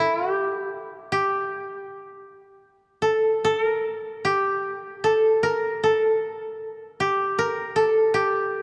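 Rubato phrasing floats loosely over a nominal 78 BPM in 4/4, giving this short excerpt of Japanese traditional chamber music a still, solitary mood. A lone koto plays alone for the full 8.6 seconds, plucked with fingerpicks, its woody, up-front tone kept close and dry within the G kumoi mode and a tuning of A4 = 439 Hz. The instrument stays in a compact range from G4 to E5, and the music moves into a second section at 4.2 seconds. Around it, a church-like room adds a long, wet reverb tail, and the production leans dark and warm. The passage is cut from a longer piece.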